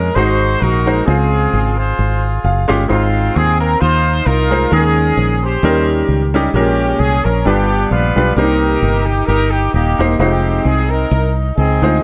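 Uptempo gospel with a soulful, hopeful mood, riding a gently swung 4/4 feel in this short excerpt cut from a longer piece. A warm horn section carries the melody from the start, its ensemble sound smooth on top with light vibrato and a pop-style polish, sitting up front in the mix. Beneath it, a fingered electric bass plays punchy, direct lines with a foam-muted character, also placed close and forward. A clear concert grand piano joins at 0.2 seconds as accompaniment, natural in tone with deep low notes and short sustain, and it steps out briefly with a fill around 2.2 seconds. The harmony moves through rich seventh chords such as Ab7, Dbmaj7, Eb7sus4, G7 and Fm7, all set in a light reverb that keeps the sound open and uplifting.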